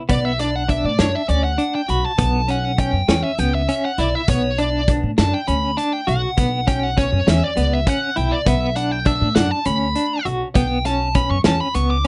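Tense and brooding, this short cut from a longer progressive instrumental piece moves in an uneven 7/8 with a straight feel, its harmony shifting from Bm through Bsus4 and Bmadd9 to B7sus2. A high-gain, distorted lead guitar solos across the whole passage over clean, compressed electric guitar arpeggios treated with tremolo and tape echo, while a woody pizzicato upright bass, a loose indie drum kit with a punchy kick and medium-tuned snare, and a grainy, very quiet tube shaker fill out the band. The dry, rough home-demo mix keeps the guitars, bass and drums up front and dulls the top end.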